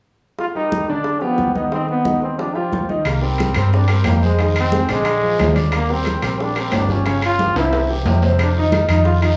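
A driving, fiery salsa groove in straight 4/4 opens on background congas and tight, high-tuned bongos beneath a punchy, up-front solo trombone with light vibrato and a brilliant grand piano accompaniment, before a dark, round hollow-body bass, ringing vintage timbales and a raspy guiro join at 3.1 seconds, with a drum fill at 7.4 seconds in this fragment cut from a longer piece, all set in a wet studio reverb.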